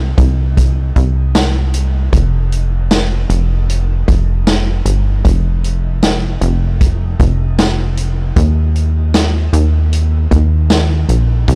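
A straight 4/4 groove at 77 BPM opens this blissful, floating dream pop excerpt. A plucky, funky analog bass with a wave-folded bite and tube saturation starts at 0.0 s, and an up-front vintage acoustic kit of punchy kick, medium-tuned snare, hi-hat and tambourine with a rolled-off top joins at 0.2 s, all in a dry, blown-out, overdriven recording.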